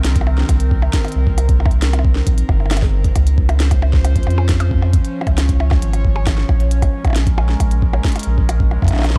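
IDM at 135 BPM in C phrygian, melancholic and eerie, where a round sine sub bass sits up front under a mellow, warbling tape-like pad of detuned sawtooth and triangle chords moving from Cm7 to Dbmaj7 to Bbm7 with chorus and phaser, while a glitchy kit of clicky hats, percussion blips and a tiny snare trails dub echo and an overdriven, pitched-up, thumpy kick enters at 0.2 s, all in a dark, dry production cut from a longer piece.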